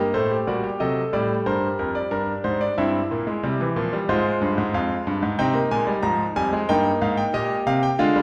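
Bathed in a wet recital-hall reverb, this solemn, contemplative fragment of a baroque-style four-part fugue in F minor at 92 BPM in 4/4, cut from a longer piece and tuned to A4 = 443 Hz, features a bright, brilliant concert grand piano playing solo from F2 to Bb5, its deep bass and polished tone sitting up front as the harmony moves from D7/A through Gm, C7/G and Fm to Eb/G at 6.7 seconds.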